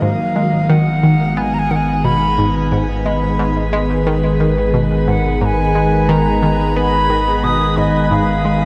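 Ambient, sequencer-driven space music with a hypnotic, cosmic mood, taken from a longer piece and resting on a single G# minor chord for its 8.7 seconds. An up-front wooden flute carries the airy, tongued melody with tape echo, over a morphing, warbling wavetable pad whose slow-attack chords are coloured by a phaser and its own reverb. Beneath them, a bright, detuned analog pluck with chorus, ring modulation and a filter sweep repeats a riff through tape echo, a deep, round sine sub bass holds the low end, and a wet shimmer reverb with a long 7.1-second tail surrounds the sound.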